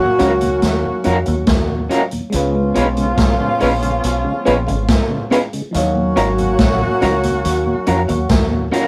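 A rough rehearsal-room recording with a moderate booth ambience frames this short, bittersweet and smooth lovers rock reggae excerpt in Eb minor at 70 BPM, moving from Ebm9 to Db7 and back. Up front, a tight horn section with light vibrato and octave doubling carries the second line, while a slightly broken-up electric guitar through a small old amp adds tremolo-tinged stabs, and a vintage drum kit with a punchy kick, medium-tuned snare, hi-hat and tape echo sits beside them. A round, foam-muted dub bass anchors the low end, and in the background an FM electric piano with a fast, decaying attack blends with a mellow tonewheel organ whose key click and slow rotary speaker colour the harmony.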